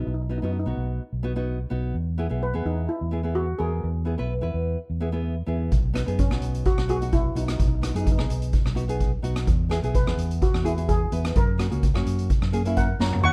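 Calypso in B major at 128 BPM, bouncy and sunny, with a shimmering steel pan lead struck with medium rubber sticks over a small fingerpicked nylon-string guitar and a dark, round, punchy fingered electric bass up front, joined at 5.7 seconds by a boomy, airy street-band drum kit that lands a fill at 13.0 seconds, all in a rough home demo mix with light reverb, cut from a longer piece.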